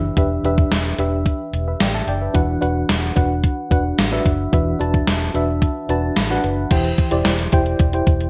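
1980s-style pop at 110 BPM in a straight 4/4, nostalgic yet urgent, this short cut opens on a full-bodied FM electric piano with tremolo and a round, punchy, foam-muted fingered electric bass, joined at 0.2 s by an up-front, sampler-style drum machine with a thumpy kick, hi-hat, crash and gated-reverb snare. The harmony moves from Em7 to Bm/E, and the piano plays a fill at 5.9 s before shifting to C/E at 6.7 s. The bright digital production adds a moderate plate reverb.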